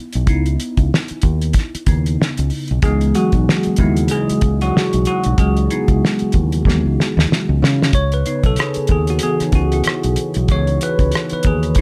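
Sultry and smooth, this neo-soul R&B excerpt moves at 94 BPM in C# minor with a lightly swung sixteenth feel, as a bell-like tine electric piano with phaser plays a clean, up-front solo over a C#m9 chord, backed by a round, amped fingered electric bass and a dry, cloth-damped drum kit with a fat snare and tight kick that plays a fill from 6.7 to 7.9 seconds before the second section, set in a light reverb.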